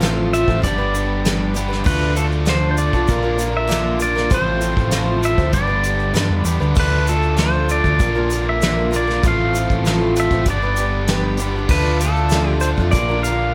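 Nostalgic and jangly, this folk rock and heartland rock excerpt moves at a steady 98 BPM in a straight 4/4, cycling through F/A, G, Dm and Bb. A clean pedal steel guitar carries the melody with fingerpicked slide lines, volume swells and plate reverb, over a shimmering, octave-doubled twelve-string acoustic guitar, a crunchy double-tracked overdriven guitar riff and a very quiet tonewheel organ holding piping chords through a slow rotary speaker. Underneath, a dark, round dub bass sits up front, a distant, roomy brush kit adds a fat snare and punchy kick, and a grainy egg shaker ticks along in the background from 0.1 seconds.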